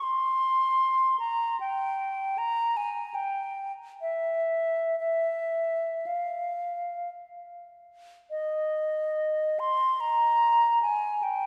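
A lone concert flute carries this short classical fragment, its pure, straight tone and crisp attack placed up front. The mood is lonely and meditative, with a free, expressive rubato in 3/4 that drifts between roughly 39 and 78 BPM. The flute stays in its upper register, from Eb5 to C6, and plays alone for the whole 11.5 seconds. A wet church reverb with a long 3.4-second tail fills the space around it, and the room is heard from further back. Around 8.3 seconds the piece turns to a new section, and the fragment ends at 11.5 seconds as a cut from a longer work.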